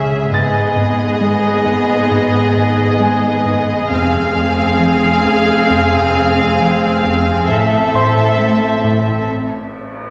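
In a straight, unhurried 4/4, this short cinematic fragment from a longer piece feels mysterious and uneasy as it moves through G#m, Fm and Am. Up front, a close, smooth violin section carries the melody with vibrato. A second, more distant violin section sings an expressive line with portamento beneath it, while a focused viola section fills the middle as accompaniment. A rubbery, hollow square-wave synth bass plays a bouncy, dark, wave-folded riff with a resonant filter pluck and fast attack. In the background, a rich double bass section and an even cello section anchor the low end, and a clear concert grand piano adds open texture with deep bass. Everything sits in a wet scoring-stage reverb, and the parts fall away by 9.3 seconds, leaving a brief break before the cut at 10.1 seconds.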